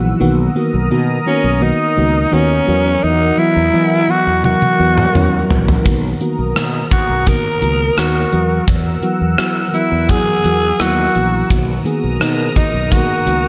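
A glossy, nostalgic 1980s-style pop excerpt in B major at 85 BPM opens on a mellow, round FM electric piano with chorus, a swirling, detuned analog pad under phaser, and a growly fretless bass with lush chorus moving between Bmaj7 and Esus2, before a breathy, raspy alto saxophone with vibrato, scooped notes and delay takes the melody at 1.3 seconds and a punchy, gated 80s drum kit of hi-hat, kick, rim click and toms bursts in with a fill at 4.4 seconds.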